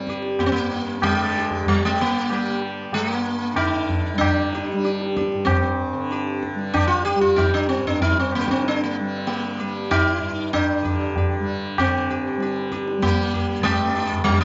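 A bright, round sitar with buzzing sympathetic strings sits up front and carries the melody through a tape echo in this introspective, meditative Hindustani classical excerpt in 5/4, set over a softly plucked, shimmering tanpura drone and a low-tuned, ringing tabla that sounds distant as if in a large room, all within light reverb and small room ambience before the music moves into a new section at 11.8 seconds.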